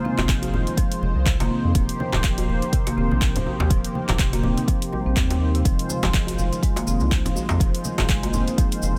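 A detuned sawtooth pad with a smooth, soft attack and chorus opens this hypnotic, earthy afro house excerpt, sharing the first moment with a woody rosewood marimba whose arpeggios trail off into dub echo. Both breathe with sidechain pumping, as does a round, deep analog bass with a fast attack and dark sustain that sits prominently beneath the harmony as it moves from Fm7 to Eb6 and back. A deep, tape-tinged electronic kick anchors the swung groove, layered with a produced deep house kit of handclaps and dark hi-hats. Acoustic hand drums fill out the background: low-tuned, thin-skinned congas heard close and dry, and a tight djembe cracking under hard hands. A grainy cabasa with a small-room sound joins at 5.7 seconds, and the whole mix sits in a generous studio reverb.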